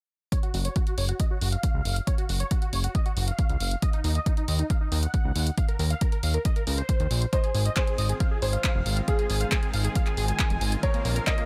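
Uplifting trance at 137 BPM in Gb lydian, this euphoric excerpt moves through Gb5, Ebm, Ab6 and Bbm7 as a huge, bright supersaw lead carries the melody, its detuned unison sawtooth treated with phaser, sidechain pumping, a low-pass filter and tape echo. Underneath, a punchy, overdriven kick sits up front with a thick, detuned bass that blends sawtooth, square and triangle tones with ring modulation and a filter sweep, while an overdriven analog drum machine adds handclaps and hi-hats that pump with the sidechain. At 7.3 seconds a boxy baby grand piano enters as a second line with tape echo, all set in a digital ambience.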